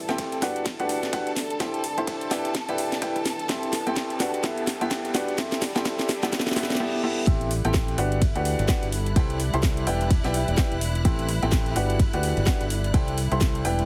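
This piano house excerpt rides a swung 16th-note groove at 127 BPM in 4/4, with a punchy, up-front electronic kick anchoring the beat and a house kit adding cracking snare and metallic hats, while a very quiet, gritty breakbeat layer of ride cymbal and snare sits far beneath. The mood is euphoric and feel-good, built on a G major progression cycling through Gmaj7, C6, Em7 and Am7. A clear, woody upright piano carries the riff up front, coloured by tape echo and sidechain pumping, and a round, dark fingered electric bass pumps along underneath. A lush bowed violin section holds sustained chords with vibrato, and a deep, moody ambient pad with warbling chorus and a slow attack drifts in the background. The opening build-up features a drum fill and a very quiet riser and reverse cymbal from 2.7 to 7.3 seconds, leading into the drop at 7.3 seconds. The whole mix has a heavily compressed, radio-ready sound with light reverb.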